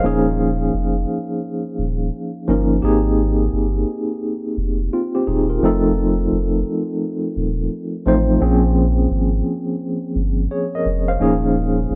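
Lightly reverberant, tape-worn sound gives this hazy, reflective hip hop fragment its faded character, moving at 86 BPM in 4/4 with a swung sixteenth-note feel in Bb dorian. A slightly out-of-tune tine electric piano sits up front with medium tremolo, its clean tone run through a combo amp and softened by a low-pass filter as it carries chords such as Eb9sus4, Abmaj9, F7 and Bbm9. Beneath it, a deep, round sine sub bass with a fast attack and long sustain holds the low end for the full 12 seconds.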